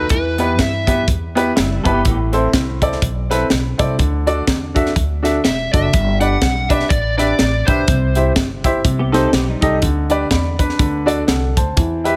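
A tight funk drum kit sits up front in this short, jubilant stretch of uptempo gospel, its high-tuned snare, hi-hat and tight kick driving a swung 4/4 at 123 BPM in G major. A clear baby grand piano plays accompaniment throughout, intimate and natural, with the soft noise of its action audible close in the sound. Underneath, a pizzicato upright bass with steel strings adds a woody low end. The melody comes from an overdriven slide guitar played with fingerpicks, heard briefly at the start and again from 5.5 to 8.3 seconds, while a clean, compressed electric guitar with ensemble chorus slips in as a background second line around 1.6 and 9.0 seconds. The harmony moves from Em through Am and D to G, then C and a darker Cm6 before settling on G/D and D, all set in a small room with light reverb for a soulful, celebratory feel.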